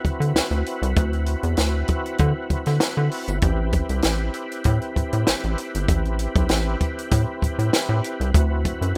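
A dry, rough home-demo sound frames this short cut from a longer funk piece at 98 BPM, cool and hypnotic in a straight 4/4, moving from D13 to Am9 at 3.4 seconds and back to D13 at 8.3 seconds. Up front, a rubbery, hollow square-wave bass with a filter pluck and dark resonance sits beside a compact cocktail drum kit with a punchy kick, high-tuned snare and hi-hat. Further back, an overdriven tonewheel organ holds thick, gritty sustained chords, colored by chorus vibrato and a slow rotary speaker.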